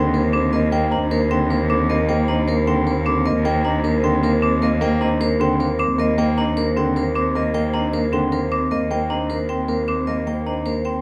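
This classical minimalist pattern piece opens with every part sounding at once: a bowed cello sits up front on a single low pitch, its tone focused and smooth-topped, with vibrato. Above it, a hard-mallet vibraphone with its motor off carries the melody in a metallic, ringing voice. A second hard-mallet vibraphone, set to a fast motor vibrato, spins airy arpeggios in the middle register. A dark baby grand piano provides mellow accompaniment in the background, and a celesta adds delicate, bell-like arpeggios up high. The music moves in a straight 7/8 with a propulsive, hypnotic drive, captured by close, detailed microphones in a dry space, and this short section, cut from a longer piece, runs to 11.0 seconds.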